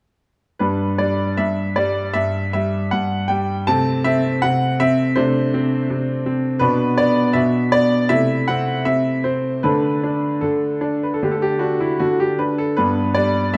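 Recorded with close, detailed microphones in a reverberant recital hall, this elegant, playful fragment of a classical-period piano sonatina in G major unfolds at a rubato 76-82 BPM, with a solo grand piano whose smooth, vintage tone and long sustain sit up front from 0.6 to 13.6 seconds, moving through A minor and D harmonies before settling on G at 12.8 seconds.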